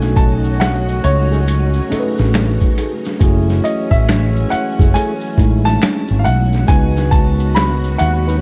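R&B and neo-soul in a soulful, smooth mood, this short slice of a longer piece rolls along with a swung sixteenth-note feel over chords moving from B13 to F#m9 to C#9sus4. A gritty, pitched-down boom bap drum kit with a thumpy kick, medium-tuned snare and finger snaps sits beside an up-front, round, punchy fretless bass coloured by lush chorus, while maracas and group handclaps add a faint small-room texture. A dark baby grand carries the melody with an intimate tone, audible action noise and short sustain, over a worn, slightly out-of-tune tine electric piano that is lightly overdriven with a subtle chorus. In the background, a shimmering, warbling string machine holds slow-attack violin chords, and a mellow horn section with vibrato and tape echo adds distant, octave-doubled stabs. A thumb-plucked nylon-string guitar with finger squeak enters at 1.3 s as a second line, all within a dry, dark mix.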